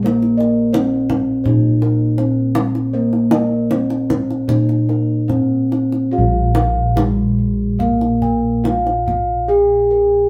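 A mellow bronze metallophone carries the melody up front, its ringing tone softened by padded disc mallets and given an airy lift. This is a shimmering, ceremonial piece of Javanese gamelan in Bb slendro, moving in a straight 4/4 at 71-87 BPM. Beneath it, bossed gongs supply a round, full bass, close-miked and dry, while a second set of bossed gongs plays bright, beating arpeggios higher up. A second metallophone adds soft arpeggios in the same upper register, and a tight kendang enters at 0.1 seconds with a compressed, saturated sound before dropping out at 9.3 seconds. The ensemble sounds like a band playing live in one room with light reverb, in a short passage cut from a longer piece that shifts to a new section at 6.1 seconds.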